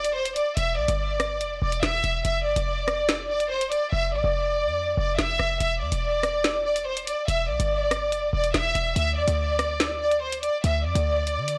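Drill hip hop at 143 BPM in a tense, ominous half-time feel in E phrygian, where a clear studio violin section carries a smooth, vibrato-laden bowed melody through a low-pass filter over Em7 and Fmaj7(no3) chords, a punchy, tight 808-style sine bass with a noise layer hits up front with a fast attack and decaying notes, and an electronic drill kit of hi-hat, rim click and a woody, soft-clipped snare drives the groove, with the hats dropping out from 3.9 to 5.6 seconds and the harmony falling away at 9.0 seconds, all inside a blown-out, overdriven mix with light reverb and digital ambience in this section cut from a longer piece.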